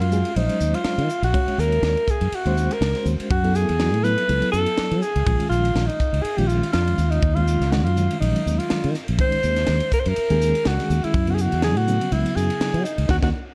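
A dark, lightly reverberant production frames this funky, slick electric jazz fusion clip, cut from a longer piece and set in a gently swung 4/4. A bright, punchy alto saxophone leads up front with light vibrato and scooped notes, bathed in plate reverb. Beneath it, a reedy electric piano with fast tremolo supplies mellow chords, a growly fingered electric bass sits prominently, and a crisp drum kit with a high-tuned snare and tight kick drives the groove in a pumping small room, until the whole band hits a closing accent at 13.1 seconds.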